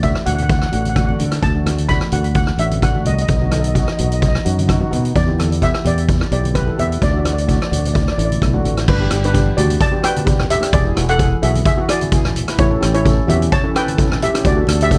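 A dark, sunny-bouncing calypso clip at 129 BPM in G major with a light sixteenth-note swing, where a shimmering double-seconds steel pan carries the melody through tape echo over an airy second pan's accompaniment, a growly, punchy fingered electric bass, an up-front street-band drum kit with a boomy kick, crash, hi-hat and rim click, and very quiet, distant low-tuned congas, moving from D through Em7 to a passage on G, E7 and A7 from 8.9 seconds.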